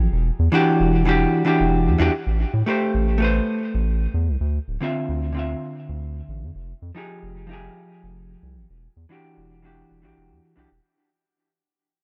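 Light reverb gives this relaxed, warm sunset chillout passage a soft sense of space, and the music fades out across its full 10.8 seconds at 112 BPM in 4/4. Up front, a clean, dark vintage hollow-body jazz guitar plays accompaniment through a low-pass filter and delay, moving from Em9 to Am9, Dm9 and Fm9 before returning to Em9. Beneath it, a round, deep analog bass with a fast attack and sustained notes sits just as far forward.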